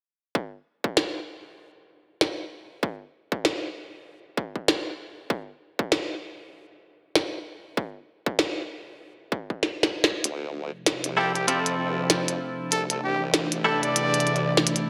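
Bright 1980s-style digital production and a moderately lush hall reverb frame this swaggering, gritty glitch hop excerpt in D minor at 97 BPM, swung on the sixteenths. A distorted, layered kick and a glitchy kit of tiny snare and clicky hats with gated reverb drive the opening up to a drum fill at 9.6 seconds. A build-up then brings in a chorused, saturated formant-sweep wobble bass, a detuned, nostalgic tape-like pad under a filter sweep, twangy clean guitar stabs with delay and sidechain pumping, and a close-miked trumpet melody with vibrato and scooped notes, as the harmony moves from Dm7 to C69 at 12.7 seconds.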